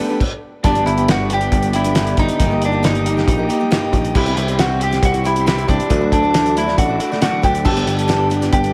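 A straight, steady four-beat pulse drives this nostalgic, open-road slice of folk rock and heartland rock, cut from a longer piece. After a brief stop just after the start, the cloth-damped drum kit sits up front with a thuddy, gritty sound: dark cymbals, a fat snare and a tight kick. The picked electric bass comes in at 0.6 seconds with a growly, direct tone. The woody, double-strung mandolin carries the melody up front through an analog delay, while a bright, jumbo-bodied steel-string acoustic guitar is picked behind it. An electric guitar through a small old amp plays a slightly broken-up, compressed riff with lush chorus, and a very quiet, reedy tonewheel organ holds sustained chords with key click and a slow rotary speaker, all over a progression that passes from G through Eb/G, C and Dadd9 in a small, snug room.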